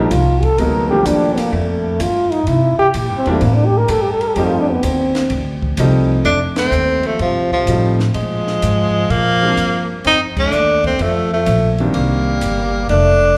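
Small-group swing and bop jazz, relaxed and sophisticated, swings at 127 BPM in F mixolydian, heard live through a club PA with plate reverb. A mellow, close-miked trombone takes the opening solo over smooth vintage grand piano, woody pizzicato upright bass and a compact cocktail kit with dark cymbals, a high-tuned snare and a punchy kick, with band accents at 6.5 and 10.3 seconds. At 6.3 seconds a breathy tenor saxophone enters up front with subtone and vibrato, and the saxophone, trombone and piano each carry a slapback echo.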